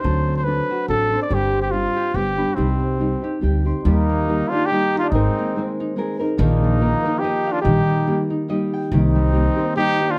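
From the first beat, a festive, romantic mariachi piece in a lilting, swung three-beat feel brings together a mellow trumpet singing the melody up front with light vibrato and classical poise, a warm thumb-plucked nylon-string guitar, a ringing fingerpicked concert harp spinning arpeggios, and a woody, thumpy upright bass played pizzicato on gut strings. The bass sits prominently in the blend, its dark tone anchoring the harmony as it moves from a minor opening through suspended chords into a brighter major passage. At 3.9 s a second trumpet joins beneath the lead, adding a softer, lower supporting line in the same classical style. The harmony then drifts through lush added-ninth and suspended colours before settling back toward a minor seventh chord, where the bass drops out at 9.5 s while the other parts carry on. A modest small-room reverb gives the ensemble an intimate, close feel in this fragment cut from a longer piece.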